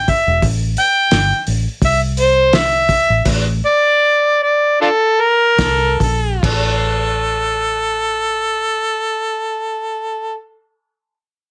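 A straight-eighth 4/4 groove with a light sixteenth-note swing carries this smoky, soulful soul blues in A minor, slowing down within 70-87 BPM, as an amplified, overdriven harmonica leads with tongue slaps, scooped notes and light vibrato over a dark, round, foam-muted fingered electric bass and a muffled, lo-fi cloth-damped drum kit with a fat snare, tight kick and gritty, rolled-off top that stops at 6.7 seconds, while a clear, smooth-topped second harmonica enters at 5.6 seconds, all under light reverb.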